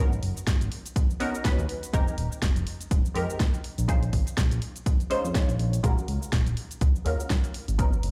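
A big, bare-room sound with large studio reverb frames this smooth, moody deep house excerpt at 123 BPM with a 16th-note swing, where muted, detuned dub chord stabs carrying phaser, chorus, cassette tape character and tape echo pump over a dark sawtooth-and-square synth bass, while an overdriven, punchy electronic kick sits up front from 0.5 seconds beside a layered kit of cabasa, hi-hat and fat snare through an Abm11, Fm11, Bbm11 and Ebm11 progression.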